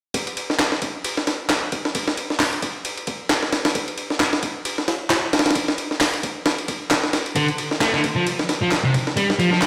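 A swung breakbeat groove at 133 BPM in 4/4 drives this energetic, swaggering breaks cut in D minor, taken from a longer piece. The sampler-style drum kit sits up front from 0.1 s, its pitched-up, compressed hits gritty and tape-toned, with a thumpy kick, a high-tuned snare, hi-hat and ride cymbal, all thinned by high-pass filtering and given studio reverb. Layered electronic handclaps join at 0.6 s, sitting lower in the mix with their own studio reverb. At 7.4 s a dark, overdriven electric guitar arrives up front with a picked, double-tracked riff between C3 and A3. The whole track carries a moderate digital room reverb and sounds as if played through a big sound system in a bare stone room.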